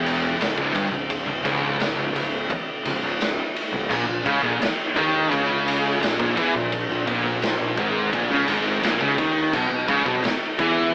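Sludgy and ominous, this short stoner and doom metal cut from a longer piece moves in a straight, heavy 4/4 with the band playing live in one room, filtered through a narrow AM radio sound and a moderate studio reverb. A raw garage drum kit sits up front, acoustic and saturated in a bright stone room that pumps, with a punchy kick, a medium-tuned snare, and crash and ride cymbals under a rolled-off top. Two thick fuzz guitars grind out the low riff from the start in the background, one warm and one dark, both picked and distorted. A fingered electric bass adds weight beneath them, bright and growly with overdriven fuzz, heard direct and amped. At 3.9 s a third fuzz guitar, bright and double-tracked, joins higher up as the harmony shifts from C#m to G#sus24, before the passage lands on E5 at 9.5 s.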